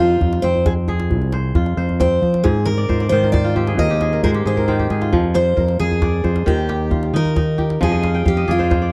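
A bright, full-bodied picked steel-string acoustic guitar with audible finger squeak takes an up-front solo for the first 5.1 seconds of this hypnotic, flowing traditional West African excerpt in 12/8. Beneath it ring crisp fingerpicked kora arpeggios with fills, an up-front dark, round, overdriven fingered electric bass, and a medium-tuned djembe that enters at 0.2 seconds and plays a fill just before the 5.1-second mark, while the chords move from Fm to Ab and later through Eb. It is heard in a dry, close 1970s-style studio recording.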